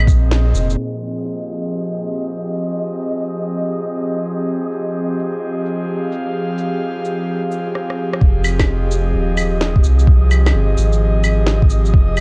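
A cassette-tinged, low-pass-filtered sound with light reverb frames this nocturnal, melancholic future garage fragment at 129 BPM in F minor, swinging on the 16ths as chords move from Bb7sus4 to Fm7. An airy, breathy pad holds up-front detuned chords with chorus, 12-bit sampler grit and sidechain pumping, while a dark, wind-like tuned noise texture hangs in the background and electronic claves, shaker, woody snare, cabasa and rim click tick along with studio reverb. After a filter sweep and a drum fill, the round, deep dub sub bass and soft, tape-warm electronic kick both return at 8.2 s.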